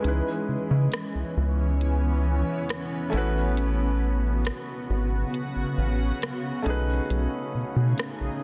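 Contemporary R&B in C# minor at 68 BPM, this moody, late-night fragment of a longer piece moves in a straight 4/4 feel. A cloudy granular pad sits up front, blurred and evolving, with a slow attack and its own built-in reverb, holding sustained chords through C#m9, A69 and B13. Alongside it, an intimate grand piano accompanies with audible action noise. A rubbery, hollow square-wave bass with a filter pluck and a moving notch sits dark and close in the mix. The trap kit adds metallic hi-hats and rim clicks roughened by vintage 12-bit sampler grit, while a soft octave-layered synth lead, round with a sub octave, chorus, phaser, delay and vibrato, touches a single B4 in the background only from 0.0 to 0.9 s, all set in a digital ambience with a dense, heavily limited modern master.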